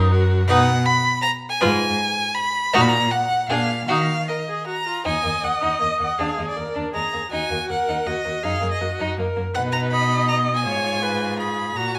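A close, up-front violin enters at 0.5 s with a high second line above a violin melody with a focused, smooth top, a viola accompaniment and a forward, even cello bass, each part bowed by one player with vibrato. This restless, dramatic fragment of a quick classical-period string quartet movement in triple time moves with rubato through a minor-key passage that turns to a new section at 5.1 s. The wet reverb of a recital hall surrounds the rich ensemble.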